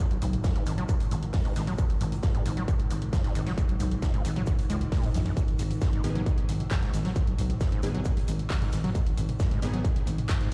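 Relentless and industrial, this excerpt of driving peak-time techno runs at 134 BPM in G# minor, built on an up-front distorted electronic kick, a growling FM bass that pumps against it, and a squelchy, resonant acid bass riff soaked in distortion, chorus and delay. A punchy overdriven analog drum machine supplies handclaps, hi-hat and toms, while a background acoustic kit with a fat, saturated snare, hi-hat and shaker adds weight beneath an eerie, metallic FM drone that hovers very quietly. At 6.0 seconds an aggressive, bright detuned rave stab cuts in with chorus, reverb and delay, and the whole mix sounds like it is blasting through a big sound system in a bare room.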